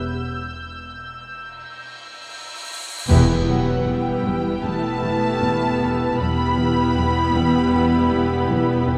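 A cinematic suspense score cue, eerie and mysterious, opens with a high, veiled texture of muted violins alone before a huge, dark cymbal swell rises at 1.9 s and breaks into an impact at 3.1 s. There the muted string body enters: a second violin line, violas, cellos carrying a riff, and double basses anchoring a low E, all bowed con sordino. Distant, mellow French horns sustain chords in the background, and at 3.5 s a violin melody arrives along with a cello bass line, the whole cue set in a wet, reverberant concert hall and cut from a longer piece.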